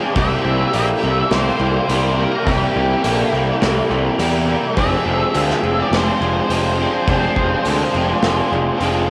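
Blissful and wistful, this short cut from a longer shoegaze and dream pop rock piece moves at 104 BPM in a straight 4/4, centred on C mixolydian. A very quiet twelve-string acoustic guitar shimmers with octave-doubled arpeggios under a crunchy overdriven guitar riff thickened by ensemble chorus, while a second electric guitar through a small old amp adds a twangy, slightly broken-up, lo-fi riff washed in reverse reverb. From 0.2 seconds an octave-fuzz lead guitar carries the melody through distortion and analog delay, and a growly, up-front fuzz bass sits beneath it with overdrive. A loose indie drum kit with a tight kick, medium-tuned snare and hi-hat pumps in a small room, coloured by cassette tape. The harmony moves from C7 to Fm6 at 4.8 seconds, and the whole excerpt carries the light reverb of a home cassette recording.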